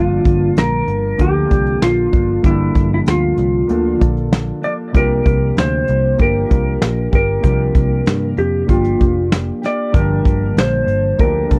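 A straight 4/4 pulse at 96 BPM from a soft brush drum kit with a punchy kick and medium-tuned snare, entering at 0.3 s, carries this wistful, hazy indie and bedroom pop excerpt in G minor, where a compressed, up-front lap steel slide melody with subtle chorus and tape echo floats over a dark, fingered clean electric guitar with vibrato, a foam-muted, round picked bass, and background electric-piano-like synth keys tinged with cassette tape and filter sweeps, moving from Gm7 to C7sus4 and back in a close, dry 1970s-style studio sound.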